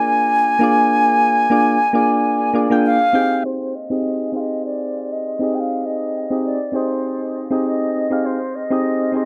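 A wooden flute and soft electric-piano-like synth keys open together on a Bb7 chord in this relaxed chillout excerpt, moving at 100 BPM in 4/4 with a gentle swing on the sixteenths in Ab lydian. The flute carries the melody between C5 and Ab5, its woody, pure tone sitting up front with vibrato, a crisp attack and lifted highs, each phrase trailing into dub echo. Beneath it, the keys supply accompaniment from Bb3 to G5 with a round, mellow, vintage sound, fast-attacking and decaying notes given a warbling shimmer by chorus and tape echo. At 3.4 seconds the harmony settles onto Abmaj7 for the second section, and both parts play through to the cut at 9.3 seconds. A moderate plate reverb and an echo-heavy, low-pass-filtered mix give the whole passage a soft, hazy glow.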